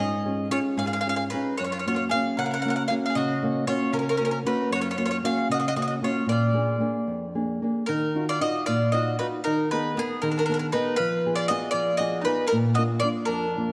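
Italian folk serenade in a rubato 6/8 at about 77 BPM, wistful and romantic, moving from F# major to Eb harmonic minor at 7.9 s. A woody, up-front mandolin carries the melody on its picked double strings while a bowl-back mandolin adds a softer, lower second line, and a small, thumb-plucked nylon-string guitar sits close to the listener as accompaniment. All three play throughout this 13.7-second excerpt, set in a moderate scoring-stage reverb.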